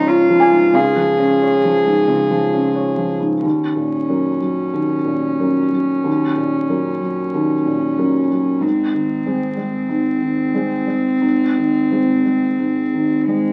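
Heard through the crackle of a very old 78 rpm record and a wet club-sized reverb, this fragile, reflective neoclassical fragment for piano and strings drifts with uneven, rubato timing. A felt-muted upright piano, dark and boxy with its action noise close at hand, carries the accompaniment from start to finish, moving from Db through Ebm7 to Ab. Alongside it, a single bowed cello plays sul tasto as a second line, its soft attack and pure, floating tone sitting just as near.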